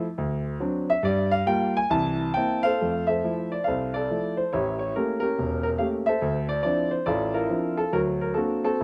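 Recorded outdoors with a dry sound and little reverb, this short cut from a longer piece puts a smooth, vintage-toned grand piano up front, with a slapback echo trailing its notes. It is a playful, swinging solo jazz performance in 4/4, with swung eighths and a loose, rubato feel. The piano plays alone throughout, reaching from deep E1 in the bass up to A5, and is tuned slightly low to A4 = 437 Hz. An opening passage moves through D7, Gm7 and C7. At 2.8 seconds it settles onto Fmaj7 and a new section begins, heading through A7b9 and Dm9 before closing on D7b13.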